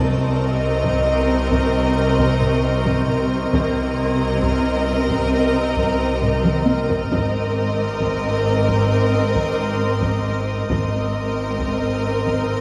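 Eerie and ominous, this suspense film cue sets a distant, vibrato-laden violin melody over a soft-attack second violin line, with close viola accompaniment, a focused cello and smooth double bass section holding the low end, and a faint high studio violin texture shimmering in the background. An icy, crystalline glass pad with chorus sustains airy chords, while a band-limited taiko ensemble struck with heavy sticks enters at 0.8 seconds and plays a fill from 6.2 seconds, just before the harmony moves from Cm7 to Abadd9 at 7.1 seconds. The whole cue sits in a dark, warm production bathed in scoring stage reverb.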